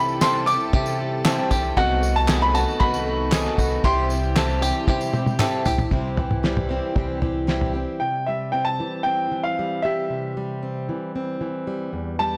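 A straight 4/4 pulse at 115 BPM drives this uplifting, hopeful indie folk piece with a building arrangement in C major. The pulse comes from a cloth-damped, thuddy drum kit with a fat snare, tight kick and dark cymbals, alongside a jingly tambourine and a hollow, distant group handclap. A bright upright piano with short sustain sits up front carrying the melody through to 12.4 s. Beneath it, a deep, boxy concert grand, a shimmering octave-doubled twelve-string acoustic guitar with finger squeak, and a twangy banjo playing arpeggios fill out the accompaniment over the chords C and B7/C. Pizzicato upright bass gives a woody, thumpy low end, a very quiet chamber string section holds soft-attacked chords in the distance, and after a drum fill ending at 5.9 s, a full-bodied fingerpicked steel-string guitar with fresh strings comes forward as the grand, strings, banjo and tambourine stop. The sound is blown-out and overdriven, set in a small room with light reverb.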